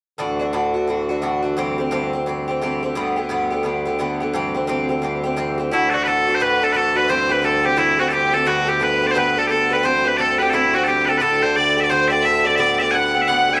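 Piercing bagpipes take the melody at 5.7 seconds, joined by a clear, lightly vibrato fiddle on a second line, over a picked, metallic Irish bouzouki accompaniment and a reedy, breathing harmonium drone in this cheerful, swung Celtic folk excerpt, all set in a moderate echo-chamber reverb.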